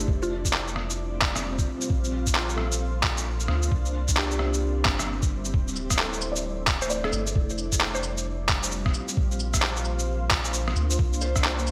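Rainy and ghostly, this future garage excerpt drifts on a dark, blurred granular cloud pad with lush chorus and a deep, round dub sub bass with tube saturation, both breathing with sidechain pumping under a swung groove. A muffled, tape-warm, thumpy kick anchors the beat as equally muffled shaker, handclaps, rim click and cabasa sit up front in gated reverb, while a felt-muted upright piano with audible action noise and delay murmurs in the background, dropping out at 7.5 seconds and briefly returning at 11.2 seconds. A woody, mallet-like FM pluck adds brief melodic touches at 0.2 and 6.8 seconds, all set in a hall-like ambience with a bright 1980s-style digital sheen.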